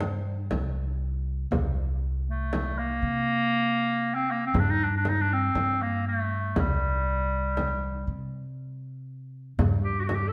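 A bright, vintage-toned clarinet leads this melancholic, soulful Arabic maqam ensemble piece, carrying a classical-style solo melody up front between G3 and C5 in 10/8 at 119 BPM counted in eighths, while a very quiet plectrum-plucked oud sounds a single C5 for only the first 0.5 seconds. Beneath it, a thumpy, woody pizzicato upright bass with steel strings moves between C2 and C3, and a deep, close frame drum played with soft hands also sits up front. The group plays live together in a stone room whose reverb lingers for about 1.5 seconds, and the clip is cut from a longer piece.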